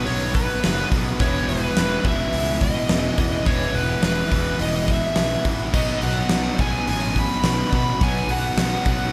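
Confident and driving, this short classic rock cut moves from B to E and back to B under a smooth overdriven lead guitar melody in a high register. Three picked rhythm guitars sit in the background playing riffs with slapback echo: a cranked stack guitar and two distorted electric guitars, one scooped and compressed, the other double-tracked. A growly fuzz bass and a huge up-front arena drum kit with a fat snare, punchy kick and bright cymbals drive the whole piece, while a very quiet, boxy twelve-string acoustic adds shimmering, octave-doubled picking, and the whole mix sits in light reverb and small room ambience.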